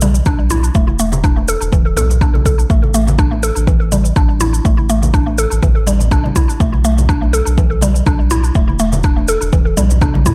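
Afro house at 123 BPM with a 16th-note swing, this earthy, driving excerpt moves through Bm, E7sus4, A5 and Bm7 chords. An up-front, woody FM synth pluck with a mallet-like, warbling vintage tone plays arpeggios through chorus, analog delay and sidechain pumping, above a round sine sub bass with tube saturation and its own pumping, while a deep, tape-warm electronic kick drum enters at 0.3 s. Produced electronic shaker and toms play from the start alongside bright, compressed congas played with soft hands, which sit in the background of an echo-heavy mix with light reverb, and a drum fill arrives at 9.8 s.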